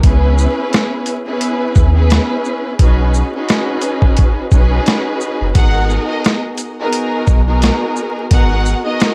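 A gritty, sampler-style boom-bap drum kit stands out most, its thumpy kick, high-tuned snare, rim click, hi-hat and shaker sounding compressed, pitched down and tape-warm at 87 BPM with a 16th-note swing. This moody hip-hop cut in G# minor is taken from a longer piece, and a deep, round sine sub bass holds sustained notes beneath the beat. A lush, distant studio string section plays bowed ensemble chords with expressive vibrato, filtered and bathed in plate reverb, moving through C#m7, B69 and G#m9. At 5.6 seconds a bright, intense symphonic violin section enters with a filtered, high melody carried by vibrato. Vinyl crackle and light reverb give the mix a gritty, moody feel.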